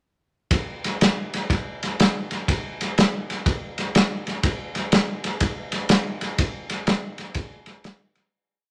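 The recording sits in a moderate, large studio reverb, yet the drum kit itself sounds close and up front, with a pumping small-room character and a rolled-off top end. This is a short, gritty, laid-back blues piece in 4/4 with a swung feel, carried entirely by a soul drum kit that plays from 0.5 to 8.2 seconds. The kit is acoustic and warm, built from a tight kick drum, a medium-tuned snare and a ride cymbal whose dark tone keeps the high end subdued. It plays a double shuffle groove through a single head section. The piece fades out from 6.4 seconds to its close at 8.3 seconds.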